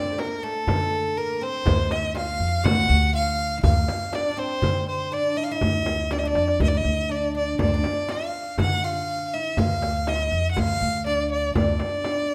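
Warm and festive, this Arabic maqam ensemble piece in D maqam saba moves at 121 BPM in a straight 4/4, cut from a longer performance. A single bowed violin, rich and focused with vibrato, sits close and up front carrying the melody, while a woody, plectrum-plucked fretless oud with double strings plays a second line beneath it, and a pizzicato upright bass with steel strings holds the low end from 0.7 seconds. A crisp, large metal-shell darbuka, close and dry in the background, plays alongside a small, bright frame drum heard in a live room, with a drum fill at 6.1 seconds, under light reverb.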